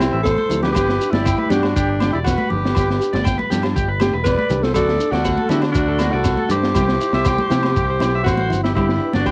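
A straight 4/4 groove at 120 BPM drives this danceable, joyful highlife excerpt in G major, with a crunchy, saturated breakbeat kit (high-tuned snare, tight kick) hitting a drum fill at 0.3 seconds, a picked electric bass, congas from 0.3 seconds, a grainy shekere and background ringing agogo bells. Up front, a raspy alto saxophone carries the melody with light vibrato and scooped notes, while a warm jazz-style trumpet plays a second line behind it. A twangy, slightly broken-up electric guitar picks arpeggios over a fingerpicked nylon-string guitar, all in a light-reverb home cassette recording that gives several parts a tape-worn character.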